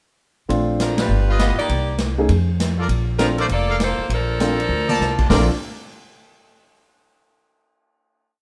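Brassy and swinging, this short big band swing piece opens at 0.5 seconds with rootless, syncopated piano comping, a woody pizzicato upright bass in a two-feel, and an up-front drum kit driving a backbeat and ride cymbal pattern with a punchy kick, all under a band accent at 0.9 seconds. An edgy saxophone section carries a motif-based melody of call phrases in four-part block voicing, while a brilliant trumpet section with light vibrato adds syncopated stabs in close voicings from 1.3 seconds. A drum fill at 4.7 seconds leads into a final chord held under light reverb.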